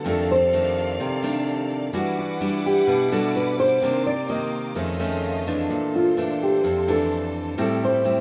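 A straight 4/4 bossa nova groove carries this relaxed, sophisticated excerpt from a longer piece. A fingerpicked nylon-string guitar sits up front with the melody, its fresh strings giving a full-bodied tone complete with audible finger squeak, while a second nylon-string guitar, thumb-plucked and dark, supplies the accompaniment beneath it. Further back, a vibraphone played with soft mallets adds a mellow, ringing accompaniment with a slow motor vibrato, then plays a brief fill between 4.8 and 5.7 seconds. A lush studio violin section holds smooth, focused sustained chords, and a grainy, bright tube shaker enters at 0.1 seconds. The harmony drifts through rich extended chords such as F13, Em9, an altered F7 and Bbmaj9#11, all set in a moderate large studio reverb.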